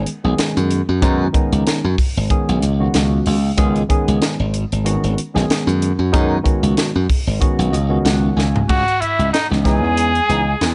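A 94 BPM groove in 4/4 with a 56% swing on the sixteenths drives this nocturnal, funky electric jazz fusion clip in C# minor, built on a punchy, glassy slap bass, a crisp, airy drum kit with a high-tuned snare, and a barky tine electric piano colored by overdrive and analog chorus over a C#9sus4 chord. The electric piano plays a fill from 7.4 to 8.7 seconds and the drums add a brief fill just before 8.7 seconds, when the harmony moves to C#m9. At that point a forceful, vintage trumpet with scooped notes and light vibrato takes the melody up front, while a breathy, hollow concert flute adds a second line in the background, all in a dry, close-sounding mix.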